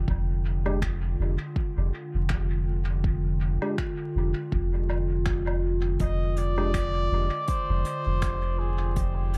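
A warbling, detuned pad and a deep, round sub bass open this hazy, meditative ambient dub excerpt together, resting on a single Fm69 chord in F dorian at 81 BPM with a light 16th-note swing. The dark, lo-fi pad drifts in with a slow attack, chorus and its own reverb, while the sub bass sits up front, thickened by tube saturation, and an electronic kick adds a layered, produced pulse beneath. From 0.7 seconds a bell-like tine electric piano places clean, bright stabs in the background through a low-pass filter and dub echo. Entering at the same moment, a gentle brush kit of finger snaps, hi-hat and woodblock carries its own dub echo. At 6.0 seconds a cup-muted trumpet steps forward with a mellow, veiled solo melody in a classical style, trailing dub echo as well. The echo-heavy mix sits in a small room ambience with a layer of vinyl crackle, lending the whole piece a nostalgic haze.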